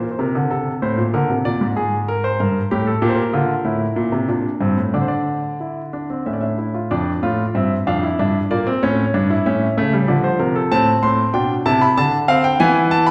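In a straight 3/4 at 95 BPM, this short cut from a longer piece unfolds as a classical, baroque-style three-part fugue for solo grand piano, solemn and serious in mood. The piano sounds warm, polished and present, sitting up front across a range from F2 to C6 and playing alone from 0.0 to 13.1 seconds. The harmony begins around G minor, passing through chords such as Am, Bb7 and Gmadd9 before settling on Gm, then shifts toward D minor from 3.0 seconds. The second section, starting at 6.9 seconds, moves through Dm/F, Em7b5/G and A, and closes on Dm7 and E. A wet recital hall reverb with a 1.6-second decay surrounds the instrument, giving it the resonance of a church or concert hall.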